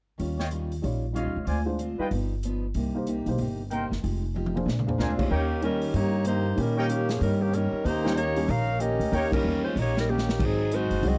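An energetic big band swing cut at 188 BPM in Eb mixolydian opens with a woody, growly pizzicato upright bass up front, a drum kit with dark cymbals and a punchy kick, and a picked steel-string acoustic guitar in the background, soon joined by mellow, distant trumpet section stabs and a short-sustain upright piano. After a drum fill, the saxophone section takes the melody from 5.0 seconds, smooth-topped and up front with vibrato, over chords that move from Eb9 through a minor ii-V and on to Eb7 and Ab7. A band accent lands at 9.3 seconds before another drum fill, and the dry, close 1970s-style studio sound carries a small room ambience.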